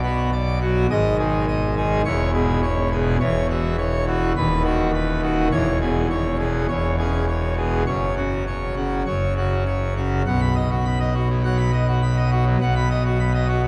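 Jubilant and majestic, this short classical organ toccata in B major moves at 103 BPM in a straight 4/4, cut from a longer piece and lasting about 13.7 seconds. A solo pipe organ on full registration, with bright mixtures, baroque voicing and audible chiff, sits up front and spans from the deep pedal range to high trebles, travelling from B minor through C-sharp minor and F-sharp harmonies before settling on a B major chord at 10.3 seconds. A cathedral reverb with a five-second decay surrounds the instrument, giving the brilliant registration a dark, warm production.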